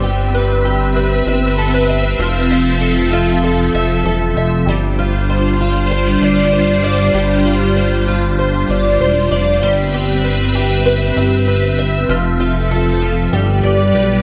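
A straight 4/4 pulse at 97 BPM carries this floating, ethereal dream pop passage in G mixolydian, tuned to A4 = 436 Hz, where a swirling, vintage string machine treated with ensemble chorus and phaser holds sustained chords, a shimmering, octave-doubled twelve-string acoustic guitar with analog chorus and tape echo picks arpeggios, and a glossy, retro chorused synth bass holds the low end, all three up front in a small room with light reverb as the harmony moves from Cmaj7/G through Fmaj7 and G7sus4 before landing on G at 13.3 seconds.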